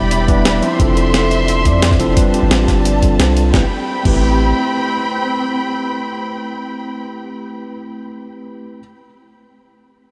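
Liquid drum and bass at 175 BPM in A minor, this melancholic, soulful fragment from a longer piece drifts through a dreamy mix soaked in a huge ambient reverb. A clean, up-front tine electric piano carries the accompaniment under a filter sweep and a diffuse ambient delay, while a soft, felt-muted upright piano sits in the background with intimate arpeggios, its thick felt and audible action noise colored by ensemble chorus and analog delay. A dark studio string section holds sustained bowed chords with vibrato and portamento, pumping against the sidechain until it stops at 7.0 seconds. Underneath, a deep, sine-toned 808-style bass with a fast attack and long decay anchors the harmony as it moves from Em7 through Dm9/F and G9sus4 to Am9. Gritty, pitched-up sampler-style breakbeat drums with crash, hi-hat and a medium-tuned snare join a thumpy, tape-warm electronic kick, and both drop out at 4.2 seconds, leaving the keys and strings to float on.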